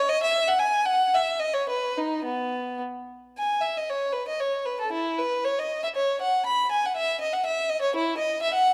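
A single bowed violin carries this short passage from a baroque-style suite movement, played solo and placed up front with a close, clear tone and vibrato. The mood is serene and flowing, in 3/4 at roughly 105-124 BPM, with a rubato feel that lets the pulse breathe. The line moves between B3 and B5, starting in B major and shifting to E major at 3.4 s, where the opening material returns. The playing stays smooth and even through to 8.7 s. A moderate recital hall reverb surrounds the violin, and the overall production leans dark.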